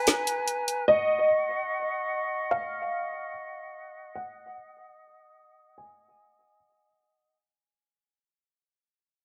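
Atmospheric cloud-rap hip hop with a spacious, hazy mood, this brief cut from a longer piece sets a mellow felt-muted upright piano melody, softened by a low-pass filter and analog delay, over airy sustained chords from a small flute group with vibrato, while a smooth R&B drum kit with a woody snare and tape-warm hats appears only from 0.1 to 0.8 seconds, all inside an echo-heavy mix with light small-room reverb, a filter sweep and a fade-out across its 7.4 seconds.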